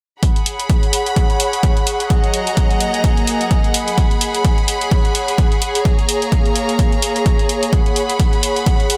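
Bittersweet and energetic, this piano house excerpt pairs a punchy, up-front electronic kick and a dry hi-hat, both swung on the sixteenths, with smooth bowed violin section chords and an airy, breathy, detuned pad with chorus, the strings and pad pumping under sidechain over a G#m7, F#69, G#m7, A#m7, G#m7 progression in light digital reverb.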